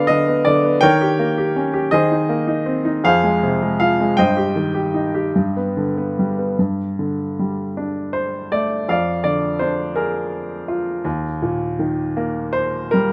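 A lyrical classical piece for solo piano, this short passage cut from a longer work carries a wistful, melancholic mood. A clear baby grand piano plays alone throughout, set up front and heard through close, detailed microphones with light reverb. The phrasing is flexible and rubato in 6/8, and the instrument ranges from a deep Eb2 to G5. The opening section drifts through shifting harmonies like Dm6, Eb7 and Fm before settling on G, and at 6.6 s a new section begins on Gsus2 and moves toward Bb7/F and an open Eb5. The sound is intimate and finely detailed, letting each chord's colour come through.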